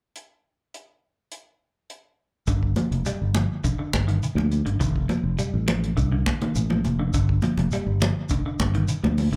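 This excerpt sounds like a live club gig heard through the venue's PA, with a light reverb hanging over the band. It is a hypnotic, intense afrobeat groove at 103 BPM in a straight 4/4, opening with a damped 70s drum kit alone, its hi-hat and dry, tight kick setting the pulse. At 2.5 seconds more of the band arrives: a growly, bright fingered electric bass sits up front, while a clean, hollow-bodied semi-hollow guitar picks arpeggios in a low register, colored by vibrato and a slapback echo. A grainy, mellow shekere adds texture from a small-room space, and high-tuned congas join at 2.8 seconds, their thin skins struck with hard hands and sounding compressed, saturated and damped, with their own slapback echo. Over this the harmony moves from G5 to F7 and back to G5, keeping the vamp circling.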